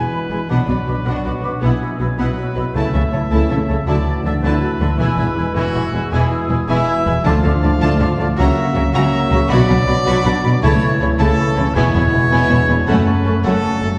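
A clear, distant trumpet sounds its stabs over lush bowed strings, with the double basses and cellos carrying the bass, a violin melody, viola accompaniment, mellow horn and trombone chords, airy flutes, oboe and clarinet lines and a ringing harp, in a heroic, triumphant film-score cue in 12/8 at 107 BPM, moving from Bm through Dm to F#m and heard from further back in a wet scoring-stage reverb.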